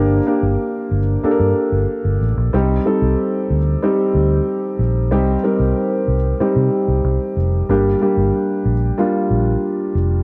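A dark concert grand piano and a vintage muted fingered electric bass begin together in this short cut from a longer 1980s-style pop piece, set in G minor at 93 BPM in a straight 4/4. The piano carries the accompaniment in a mellow, intimate voice, its action noise audible and its deep bass given a cassette-tape coloring. Beneath it, the foam-muted bass sounds round, punchy and amped, sitting up front alongside the piano. The harmony moves from Gm to Cm at 2.5 seconds and returns to Gm at 7.7 seconds, giving the passage an urgent, moody pull. A moderate spring reverb and the home-cassette recording lend the whole a vintage, close-quarters feel.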